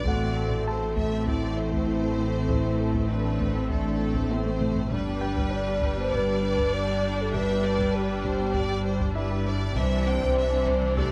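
Brooding and tense, this cut from a hybrid orchestral and electronic film score sets mellow French horns holding sustained chords over lush bowed violins and focused violas, with smooth cellos and very quiet double basses joining a round sine sub bass on the low end, while a detuned sawtooth analog pad with chorus, a soft ringing harp-like synth pluck playing arpeggios, a brilliant concert grand piano with digital delay, and hard-stick taiko drums with a fill at 4.3 seconds fill out the closely miked, lightly reverberant sound as the harmony moves from Am to G to Cadd9.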